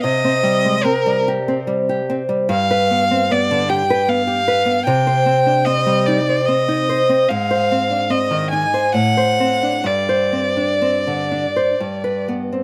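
Closely and intimately recorded with a light touch of reverb, this solemn, melancholic excerpt from a longer romantic duo in C minor moves in a rubato 3/4 at roughly 61-77 BPM, with a single bowed violin up front singing a rich, focused melody with vibrato over a woody, fingerpicked nylon-string guitar whose old strings give its accompaniment a small, intimate character, as the harmony passes from Cm through G7, Ab and D7/A to a Gsus4 at 9.9 seconds that settles onto G at 11.8 seconds.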